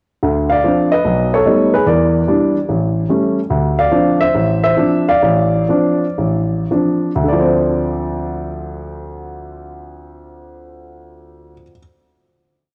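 A home cassette recording with moderate, lush hall reverb carries this brief, moody late-night jazz piece in D minor for solo grand piano, swung in 4/4 at 102-146 BPM. The warm, up-front piano has a short sustain and pairs a stride bass with close voicings, spinning a motif-based melody in sentence-like phrases that is partly doubled in thirds. The tempo slows between 3.5 and 7.3 seconds, and a final chord rings from 7.3 seconds to the close.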